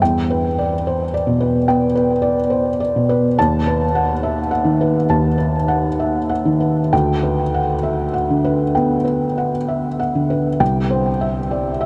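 A felt-muted upright piano plays alone throughout this 11.9-second fragment of neoclassical minimalist music, its tone soft and mellow, with the mechanical action noise of the instrument clearly audible. Intimate and melancholic, the playing moves in a rubato 4/4 at roughly 64-73 BPM, spanning C2 to A5, with the instrument tuned to A4 = 438 Hz. The piano sits up front and natural in the mix, touched by a delay, while a huge ambient reverb with a 7.2-second decay soaks the dreamy sound, and the top end is rolled off above 10.6 kHz. The harmony moves from Em7 to B7/D# at 3.4 seconds, then Gmaj7/D at 6.9 seconds, and arrives on C at 10.6 seconds.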